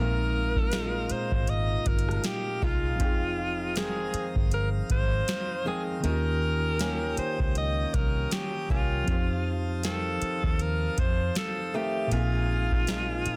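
Contemporary R&B at 79 BPM in F minor with a longing, moody swing, led by a bright, forceful alto saxophone melody with vibrato over clean tine electric piano, a brilliant baroque-voiced pipe organ plenum with chiff and sidechain pumping, a woody, boxy fingerpicked acoustic guitar on old strings arpeggiating in the background, and a round, foam-muted vintage electric bass, while a booming analog drum machine with a deep kick, crisp snare and metallic hats enters up front at 0.6 seconds in a dry, dense, heavily limited mix.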